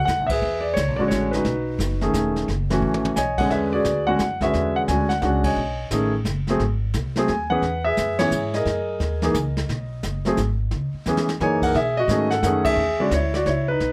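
A concert grand piano and an upright bass open together, joined a moment later by a brushed jazz drum kit, in a relaxed, warm jazz trio waltz in 3/4 at a brisk 175 BPM with a swung eighth-note feel. The piano carries the melody up front with a deep low end, sitting clearly above the woody, pizzicato upright bass, while the drums stay further back with dark cymbals, a medium-tuned snare and a boomy kick. The harmony moves through rich extended chords centred on B mixolydian, such as E13, B13, F#m7 and B69, before passing through G#7 and C#m7 and returning to B13 and E13. The trio hits shared accents at points including 5.4 and 12.6 seconds, and short drum fills break in around 2.8 and 11.1 seconds. A light reverb gives the smooth studio sound a gentle sense of space in this short cut from a longer piece.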